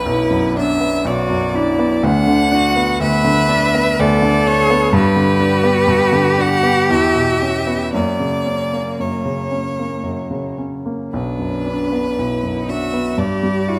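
A clear, bowed violin with vibrato carries the yearning melody up front over a warm grand piano accompaniment from the very start, joined almost at once by a rich, focused cello with a smooth top on the second line, in this melancholic slow romantic movement for piano trio in B minor and 3/4, taken with rubato at 56-64 BPM, tuned to A4 = 435 Hz, heard through close, detailed microphones in a moderate recital hall reverb, and cut from a longer piece.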